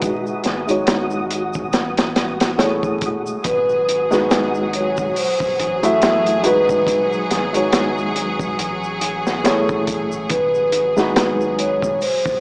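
A lightly swung 4/4 breakbeat drives this dark, cinematic trip hop fragment, its crunchy, saturated kit placed up front with a punchy kick, a high-tuned snare, hi-hat and a rolled-off top, while a tube shaker sits far back in a small room. A felt-muted upright piano carries the accompaniment from the start, intimate and mellow with audible action noise, shaded by harmonic tremolo, tape echo and a filter sweep that runs through the whole clip. A soft, round dub sub bass enters at 0.5 seconds, and a grainy, flickering granular texture hovers in the background with a slow attack and its own reverb. From 3.4 seconds a distant symphonic string section holds bright, intense bowed chords with light vibrato, and a vibraphone played with soft mallets joins almost at once for the melody, metallic and ringing with tape echo. The harmony moves between G#m7 and Amaj7, briefly touching A5, all heard through a dry, gritty small-room sound with vinyl crackle and a small-speaker character.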